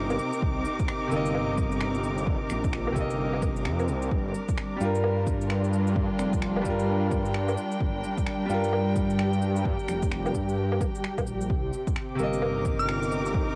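A swelling, detuned saw bass sits up front in this melancholic, ghostly future garage excerpt, its saturated, menacing tone pumping from 0.0 s while moving between F1 and G2. Muted studio strings hold veiled, con sordino chords with vibrato, also close and pumping, while a bright upright piano adds woody accompaniment touched with tape echo. The groove runs at 130 BPM in 4/4 with a 61% swing on the 16ths, carried by a punchy, overdriven electronic kick and a layered bed of shaker, woodblock, cabasa and finger snaps, both in a small room with cassette grit. The harmony in C minor moves from Cm7 to Gm7 at 4.1 s and back to Cm7. A glassy, crystalline synth bell flickers briefly on a high F at 12.8 s, shimmering with chorus and phaser. The whole excerpt has a home-cassette character with vinyl crackle and a modest small-room reverb.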